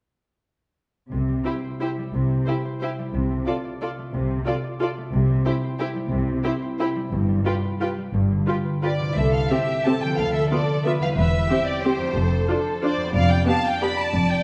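Classical orchestral ballroom waltz, festive and elegant in an uneven, rubato 3/4, where a mellow, ringing concert harp's arpeggios and the soft-attack cello and portamento double bass sections enter at 1.1 seconds beneath a lush, distant violin melody, a focused second violin line and close viola accompaniment, all bathed in a wet recital hall reverb and a dark production through a short cut from a longer piece.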